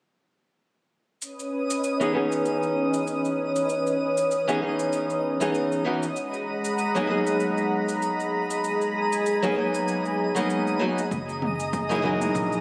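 A lush, detuned unison pad sits up front in this sunset chillout excerpt, its slow-attack sawtooth and square-wave chords warbling with chorus as they move from C#m9 to G#m9 and on to F#13. At 97 BPM in 4/4, with a swung sixteenth feel in C# dorian, the mood is warm and smooth. The piece opens at 1.2 s with the pad and overdriven electronic cabasa and toms, and at 1.6 s a twinkling granular texture joins, adding FM sparkle and octave-up shimmer. A fingerpicked nylon-string guitar enters at 2.0 s, up front and classical in tone, with fresh strings, audible finger squeak, a low-pass filter and tape echo. At 11.1 s a dark, round fretless electric bass with tube saturation arrives alongside a punchy, overdriven electronic kick tucked in the background, and at 11.4 s very quiet, low-tuned congas appear briefly. Recorded on a phone in the room, the sound carries a plate and club reverb wash with compression.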